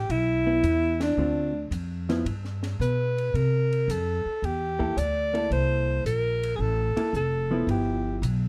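A lilting swung 4/4 carries this playful small-group jazz excerpt, where a breathy alto saxophone with light vibrato sings the melody up front over a woody, thumpy pizzicato upright bass, a dark, clean hollow-body guitar comping from 0.5 seconds, and a dry compact cocktail kit with a high-tuned snare, punchy kick and dusky cymbals, the band hitting an accent at 0.9 seconds in a mellow, lightly reverberant mix.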